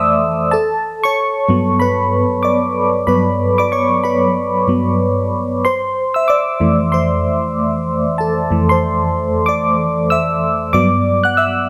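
Relaxed and smooth, this short R&B excerpt moves at 94 BPM in 4/4 with a gentle sixteenth-note swing, carried entirely by a solo FM electric piano that sits up front across its full 11.7 seconds. The piano has a fast attack and decaying notes with a noise layer, its tremolo and phaser giving the tone a shimmering quality as it ranges from F2 to F#6 over chords that shift between Fmaj7 and Gmaj9, closing on Gmaj7 at 10.7 seconds. A moderate echo chamber reverb lends depth, and a faint mains hum lingers beneath.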